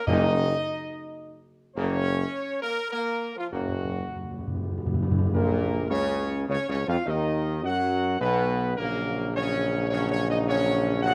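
A dark, smooth-topped trumpet section carries the melody up front in this regal, majestic classical fanfare in F# major, moving at 105 BPM in a stately 3/4. Beneath it, a distant, roomy French horn section and a tight, bright trombone section hold sustained chords in the background, while a warm tuba anchors the bass, all with light vibrato. Round, soft-mallet timpani strike at the opening and return with a fill from 3.5 seconds, all under light reverb in a passage cut from a longer piece.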